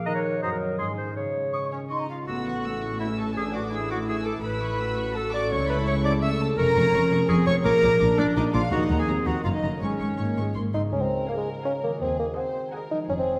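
An up-front, bright solo clarinet carries a second line through this playful, whimsical film cue in brisk triple time, over ringing harp arpeggios and a dark bassoon, as airy flutes and a clear oboe sparkle briefly at the start before soft-attack sul tasto strings gather, with floating studio violins arriving at 1.7 s and, from 2.3 s, intimate chamber violins singing the melody above them, joined by violas, shadowy cellos and rich double basses, all bathed in a lush scoring-stage reverb that lends the passage a quirky, magical glow.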